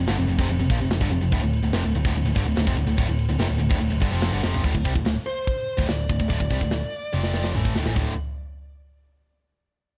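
Aggressive and heavy, this short cut from a longer heavy metal piece moves in a straight 4/4 feel. Two bright, picked electric guitars, one overdriven and one tight and distorted, sit in the background playing the riff over power chords and a D minor harmony. A round, dark hollow-body short-scale bass, picked and amped, anchors the low end. Up front, a tight metal drum kit with a medium-tuned snare, a tight kick, crash, hi-hat and toms has a mid-forward, rolled-off top, with fills at 4.4 seconds and again leading into the closing part near 8.0 seconds. At 5.3 seconds a high-gain lead guitar enters for a brief melody in a high register, its distortion trailed by tape echo. The production is dark and dry, with little reverb.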